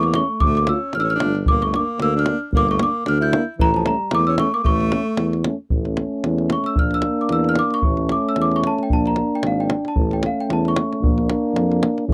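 Bittersweet and restless, this Balkan brass band excerpt moves at 113 BPM in a swung 2/4, set in A phrygian dominant, and the bell-like celesta, slightly out of tune, carries the melody up front and takes a solo from 5.7 seconds. Beneath it a clear alto saxophone with vibrato and slapback echo plays a second line until 5.4 seconds, two euphoniums, one with a soft attack, fill in the accompaniment, a mellow, roomy tuba holds the bass, and a tight davul drives the percussion. The dry, close sound recalls a 1970s studio with light reverb as the chords shift between Dm, Gm, A and Bb.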